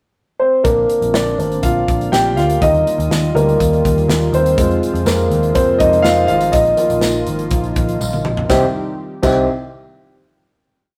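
A rough rehearsal-room recording set in a moderate stone room gives this short, complete piano-driven pop piece in C minor an earnest, driving character at 122 BPM in a straight 4/4. A woody, up-front upright piano carries the music in close-voiced eighth-note chords with long sustain, opening with a pickup bar and then taking a solo through a pre-chorus that moves from Bbadd9 and Ebadd9 to Fm and Bbsus4. Beneath it, a lush, detuned sawtooth pad with a slow attack and chorus sustains warbling chords, while a dark, foam-muted picked electric bass drives steady eighth notes with slides. A polished studio drum kit supplies a pop backbeat with a punchy kick and medium-tuned snare, plus hi-hat, crash and toms, and it plays a fill at 8.0 seconds. A jingly tambourine enters at 5.1 seconds to mark the backbeat from the background, and the piece closes at 8.5 seconds on a final C minor chord.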